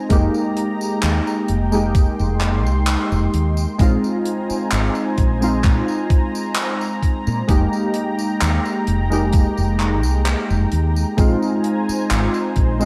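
A slow, straight 4/4 pulse at 65 BPM, set by a thumpy, sampler-style electronic kick up front and a tight, dry funk kit of handclaps, hi-hat and tambourine touched with gated reverb, drives this hazy, nostalgic vaporwave excerpt in F minor, where a round, dark fretless electric bass with ensemble chorus sits forward beneath warbling, detuned lo-fi synth keys soaked in chorus and tape echo and a thick, bright unison pad that sustains Fm11 and Bb9sus4 chords throughout.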